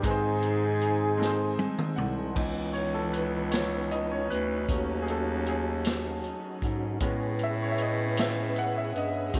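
A slow 6/8 pulse at 52 BPM, felt in dotted quarters, carries this soulful, solemn gospel passage in C# minor. A mellow horn section states the melody up front in octave doubling with jazz-style vibrato until 2.0 s, while a brilliant concert grand piano with deep bass accompanies throughout and a round, dark tonewheel organ sits in the background with key click, chorus vibrato and a slow rotary speaker. A clear, close-miked bass clarinet plays the bass line in a classical style, and a distant, roomy big-band drum kit with a punchy kick and medium-tuned snare adds a fill alongside the piano before the piano takes a solo at 2.4 s. At that point a bowed studio string section enters in the background with expressive portamento, as the harmony moves from C#m9 through D#m7b5 to Amaj9. Light studio reverb frames the sound of this passage cut from a longer piece.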